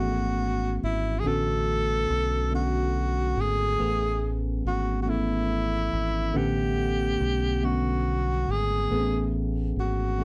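Sensual and tender, this slow six-eight R&B excerpt in A major moves at 47 BPM, with a breathy, whispered tenor saxophone carrying the melody up front in a jazz style, its soft attack, scooped notes and light vibrato framed by a slapback echo. Beneath it, a worn, slightly out-of-tune tine electric piano played through a combo amp and colored by a phaser supplies the accompaniment over Amaj9, Bm13 and Gmaj9#11/A chords, while a dark, round fingered dub bass sits up front, direct and amped. The dry, close sound recalls a 1970s studio session, with all three parts playing from 0.0 to 10.2 seconds.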